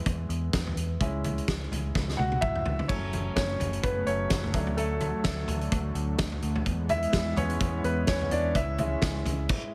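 Earnest and dramatic, this swung piano-driven pop excerpt is led by a clear, polished concert grand piano up front, with a round, foam-muted vintage electric bass and a roomy, loose indie drum kit with a fat snare and dark cymbals; the drums play a fill from 1.9 to 2.9 seconds before a lush, detuned sawtooth pad with chorus enters in the background at 2.9 seconds, all under light reverb and a heavily compressed radio sound.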